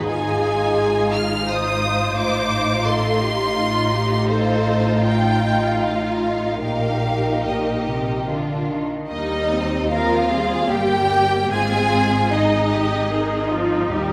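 A wet concert hall reverb surrounds this tender, slow romantic movement for string orchestra, heard as an excerpt cut from a longer piece in Eb major and 3/4 time, moving with rubato at roughly 70-88 BPM. Two warm violin sections sit up front, one carrying a smooth, vibrato-rich melody high above while the other traces a focused second line beneath it. Violas provide close, expressive accompaniment with soft attacks and touches of portamento. A rich, even cello section and a distant, bowed double bass section share the bass, both colored by vibrato. The harmony drifts through Fm7/Ab and F7/A toward Eb/Bb and Bb, and at 9.1 seconds a new section opens on Eb before moving to Ab, with the violins stopping at 13.5 seconds while the lower strings continue to the close.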